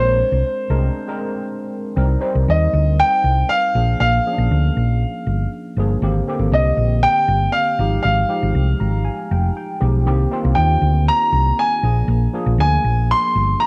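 Bittersweet and urban, this short passage cut from a longer piece is polished 1980s jazz-funk pop in C minor, moving at 119 BPM in a straight 4/4. A smooth, vintage grand piano carries the melody up front between C5 and C6, its tone softened by a cassette tape character. Beneath it, a worn, slightly out-of-tune tine electric piano plays accompaniment through a combo amp with analog chorus, and it steps forward with a fill from 8.6 to 10.1 seconds. A dark, round hollow-body short-scale bass, fingered and amped, sits prominently in the low register. After a brief break from 1.0 to 2.0 seconds, the harmony moves through rich chords such as Cm7, Bb7, Abmaj9#11 and Fm9/Ab. Light studio reverb and the intimate feel of a home cassette recording lend the whole a warm, lived-in glow.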